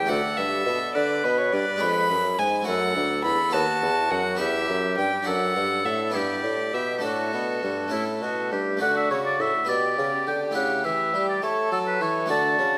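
A warm oboe with vibrato leads this radiant, flowing baroque-style sonata movement in 6/8, with a gut-string violin playing a close, reedy second line beside it, both sitting up front. Beneath them, a brilliant, airy harpsichord with octave strings supplies plucked continuo accompaniment, while a mellow bassoon holds the bass with light vibrato and a smooth top. All four play throughout this 12.8-second cut from a longer piece, set in a recital hall with a reverb decay of 1.5 seconds.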